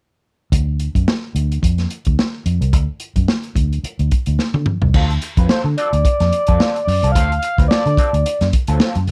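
A crunchy, gritty breakbeat drum kit with dark cymbals and a tight kick drives this energetic, playful funk excerpt from the start, alongside a round, foam-muted fingered electric bass, with both up front in a dry, close 1970s-style studio sound. After a drum fill at 4.4 seconds, the music moves from a chordless groove onto a D7#9 chord at 4.9 seconds, where a twangy, slightly broken-up electric guitar with wah comes in quietly underneath. At 5.5 seconds a smooth sawtooth synth lead with chorus and vibrato carries a short, expressive melody.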